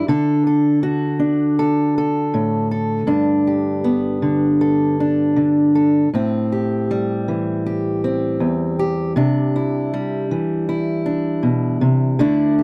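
A dry, close recording with little reverb places a lone steel-string acoustic guitar up front, its parlour-sized body giving a warm, intimate tone marked by audible finger squeak. This is solo fingerstyle folk at 79 BPM in a straight 4/4, with a wistful, haunting mood. The fingerpicked guitar plays alone throughout the 12.6-second passage, ranging from E2 up to A4. The harmony moves from D to Gadd9, then to Am7 and Cadd9, each chord holding for roughly three seconds. The open colours of the added-ninth chords lend the progression a searching quality, and the fragment is cut from a longer piece.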